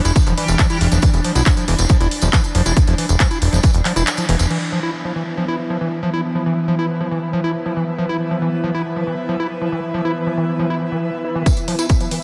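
Psychedelic and hypnotic, this psychedelic trance passage drives at 138 BPM in a straight 4/4, cut from a longer piece and bathed in a huge ambient reverb that gives the mix a dreamy, soaked quality. It opens on a drop, with a heavy, tape-warm electronic kick up front alongside a techno kit of crash, handclaps and warm hats, a jingly vintage tambourine, and a punchy, funky analog bass whose filter pluck snaps and decays beneath everything until about 4.5 seconds. Running through the whole passage, an overdriven acid bass riff squelches with gritty, resonant filter sweeps and analog delay, while an evolving wavetable pad holds bright, morphing sustained chords through a phaser, both of them pumping against the sidechain. A very quiet metallic wobble bass flickers briefly on a single G3 early on. The kick drops out at 4.1 seconds on a band accent, and from 4.5 seconds an airy, breathy pad with a chorus-thickened, mellow noise layer floats higher above the acid line until the drums, tambourine and kick return at 11.5 seconds.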